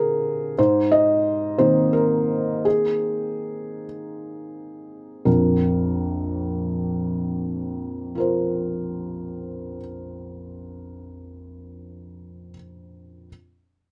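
Intimate and hopeful, this short passage from a longer neoclassical minimalist piano piece drifts in a rubato 6/8 at roughly 41-63 BPM, easing into a slower pace over its first 5.3 seconds. A felt-muted upright piano plays alone, its soft, mellow tone captured up front by close, detailed microphones with little reverb. It moves from Bbadd9 to Abadd9 and then settles on Bbsus2 as a new section begins at 5.3 seconds.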